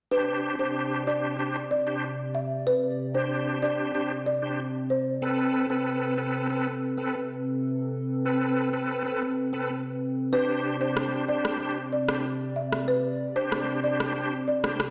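Summery and sunny, this dancehall fragment is cut from a longer piece and moves in a straight four-beat feel. A woody, rustic folk marimba played with medium mallets carries the melody, treated with a digital delay. It sits out from 5.0 seconds and returns at 10.3 seconds. Beneath it, a reedy, lightly overdriven tonewheel organ with key click, chorus vibrato and a fast rotary speaker keeps up the accompaniment up front, while a hollow, flute-like pad with slow attack and chorus holds mellow sustained chords over Csus2 and Amadd9/C. An up-front, layered electronic rim click enters at 11.0 seconds. The whole sounds as if played on a big sound system in a bare stone room, with light reverb.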